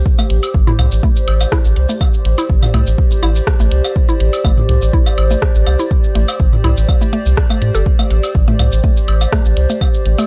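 A dry, gritty recording with a cassette-tape haze sets a clinical, cool mood for this minimal techno piece, cut from a longer work and resting on a single Am7 chord in a straight 4/4 metre. A deep electronic kick sits up front with a touch of studio reverb, joined by a layered garage kit of hi-hat, rim click and shaker, plus electronic claves, woodblock and toms that sound re-recorded in a small room. Beneath them, a round analog bass with a fast attack and dark, wave-folded tone holds the low end, thickened by tube saturation and sidechain pumping. A woody, mallet-like synth pluck carries the riff, its short, percussive notes smeared by chorus and tape echo. Above it all, a warbling, nostalgic pad with a slow attack and long release drifts through chorus, phaser and its own reverb, lending a mellow lo-fi glow as it breathes with the sidechain.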